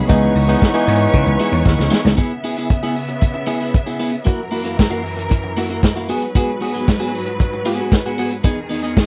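Disco excerpt at 115 BPM, driving and sultry in a dry, close 1970s-style sound, where a barky tine electric piano, growly slap bass and grainy background shaker drop out after a drum fill ending at 2.2 seconds, leaving the muffled, punchy vintage kit, twangy chorus-lush clean guitar and a clear, bowed string section to carry C#m7, F#7, G#m7 and Emaj7 chords to the end at 9.1 seconds.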